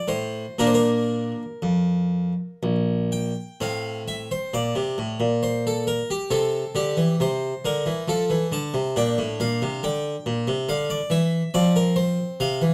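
The recording has a dark, warm studio sound with a moderate sense of room around it, and the harpsichord sits up front, close-miked and dry. This is a short excerpt from a longer piece, a baroque-style classical suite movement in 3/4 and Bb major, moving at roughly 57-72 BPM with a rubato feel that lets the pulse breathe. The lone harpsichord, a Flemish-style instrument with two sets of strings, has a full, plucked tone that spans from deep bass notes up into the high upper register. The mood is flowing and radiant, as the harmony moves from F toward Bb, opens onto a rich Bbmaj9 over A at 3.6 seconds, and passes through C and F before settling on an open F fifth near 11.5 seconds. The opening phrase returns after that first statement, giving the brief passage a poised, songlike shape.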